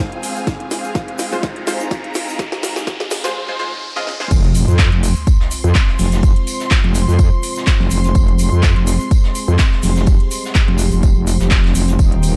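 A rich, lush string section opens this swaggering, gritty bass house passage, cut from a longer piece, joined almost at once by a deep, moody pad with a warbling chorus and a grainy egg shaker tucked in the background. The opening build-up rides a filter sweep and a riser and sub drop, while the tape-warm house kit plays a fill of cracking snare, metallic hats, handclaps and crash over a punchy, up-front electronic kick and a light swing. Bold, bright orchestra-hit-like synth stabs, detuned and layered with noise and trailed by delay, arrive at 1.3 seconds. At 4.3 seconds the drop lands with an impact as an aggressive, saturated FM wobble bass takes over the low end, and a vintage brush kit with tambourine slips in far behind. Sidechain pumping moves through the pad, strings, stabs and bass, and the whole mix sits in a light studio reverb.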